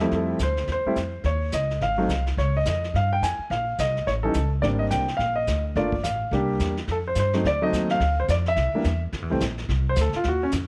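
Opening on a warm baby grand piano carrying the melody over woody pizzicato upright bass and a vintage brush kit with a punchy kick and rolled-off top, this short, swinging jazz piano trio excerpt in F major moves briskly at 213 BPM through lush, shifting harmonies such as Fmaj9, Abmaj9#11 and D7b9 before the piano takes a solo from 9.1 seconds as bass and brushes carry on beneath it, all in a natural studio room.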